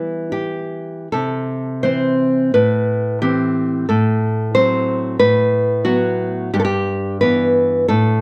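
Intimate and melancholic, this brief fragment of a romantic piece for solo classical guitar moves in 2/4 with a free, rubato feel. The dark, fingerpicked nylon-string guitar sits up front in light reverb, opening on E minor before a longer passage from 1.1 seconds drifts through C6, A minor, F#dim/A and B5/A to settle on Em/G.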